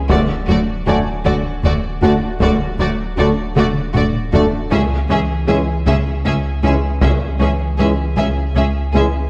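Cinematic hybrid orchestral and electronic film score in C# phrygian, moving at a slow 52 BPM in a straight 6/8, with a vast, brooding mood across this short fragment of a longer piece. A deep, round sub bass anchors the low end alongside focused cello and double bass sections, while a violin section carries an expressive, lush melody with soft attacks and vibrato over a second violin line and a smooth viola accompaniment. A glassy, crystalline wavetable pluck with chorus and tape echo spins arpeggios in the background, and a muted, intimate felt piano with audible action noise adds tape-echoed texture until 4.7 s. Trombone and French horn sections enter at 0.9 s with sustained chords, the horns dark and the trombones clear, as distant taiko drums struck with hard sticks rumble beneath and break into a fill from 3.6 s. The harmony shifts from D to C#m at 4.7 s, and a moderate scoring stage reverb gives the ensemble a spacious, enveloping sound.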